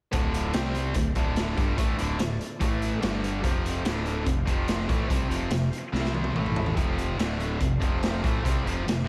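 Brooding and driving, this classic rock passage in D minor at 144 BPM rides on twin distorted electric guitars, one warm and overdriven, the other tight and bright, both riffing with slapback echo over a punchy fuzz-laden picked bass and an up-front, gritty garage drum kit with a boomy kick, medium-tuned snare and pumping small-room sound that breaks into a fill from 5.9 to 6.8 seconds, while a very quiet, thick tonewheel organ holds sustained chords through a slow rotary speaker beneath a light room reverb.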